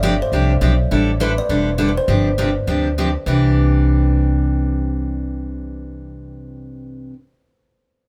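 Acoustic string swing in the jazz manouche style, this short cut from a longer piece feels playful and charming, moving at a brisk pace with a swung lilt. A kalimba carries the melody for the opening 2.9 seconds, its thumbnail-plucked tines sounding bright and ringing, with an airy shimmer from a tape echo. Beneath it, a picked steel-string acoustic guitar supplies the accompaniment up front, bright with fresh strings, while a pizzicato upright bass on gut strings gives a dark, thumpy foundation in the low register. The harmony moves between suspended dominant chords before settling onto a Cadd9 at 3.3 seconds as the passage turns to a new section. The sound is dry and intimate, captured with close, detailed microphones that keep the bass and guitar prominent.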